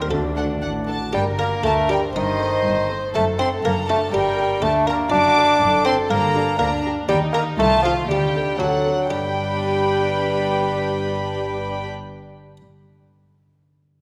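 Moving in a straight two-beat pulse, this playful, whimsical film cue pairs a muted, lute-like buff-stop harpsichord melody with ringing concert harp arpeggios in the background, while a mellow French horn section holds sustained chords only until 0.9 seconds. Violin sections enter at 0.4 seconds with a floating, sul tasto melody and second line over dark, intimate violas and cellos and soft-attack double basses. At 1.1 seconds a clear, up-front solo bassoon adds a mischievous accompaniment, all set in a moderate scoring-stage reverb.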